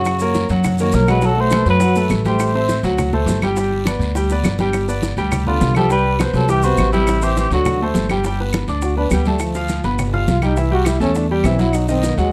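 Sunny and danceable, this excerpt of Afro-Cuban jazz in G major moves at a brisk 206 BPM in a straight 4/4, with a dark, smooth cor anglais carrying the classical-style melody in two short phrases while a mellow trombone, with light vibrato and scooped notes, plays a second line before taking a jazz solo from 8.2 seconds to the end. Underneath, an up-front grand piano with audible action noise gives clear, intimate accompaniment, and a woody pizzicato upright bass sits forward in the mix. Quiet congas and round, low-tuned bongos lead the percussion, with woody claves, a raspy guiro and grainy, distant maracas sitting in the background of a close, dry recording.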